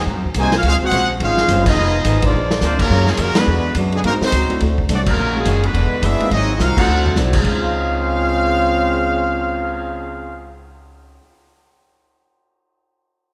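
The rhythm swings at 211 BPM in 4/4, with eighth notes given a moderate swing that drives this energetic, joyful big band jazz passage in Db major, cut from a longer piece. A woody, thumpy upright bass sits up front under a vintage drum kit with a punchy kick and rolled-off top, which plays crash, ride, hi-hat, snare and toms, adds drum fills at 2.3 seconds and around 6.6 to 7.2 seconds, and drops out at 9.6 seconds. A bright trumpet section with light vibrato carries the melody up front, supported below by a clear, close-miked trombone section on a second line, while a separate trombone section holds warm sustained chords in the background only through the opening 2.3 seconds. A boxy picked acoustic guitar plays swing accompaniment in the background throughout, and a smooth vintage grand piano joins it at 2.9 seconds. The harmony moves through rich jazz chords such as Ab9, Dbmaj7, Ebm11 and E9, settling back on Dbmaj7, all heard in a moderate scoring stage reverb that gives the ensemble a roomy, polished sheen.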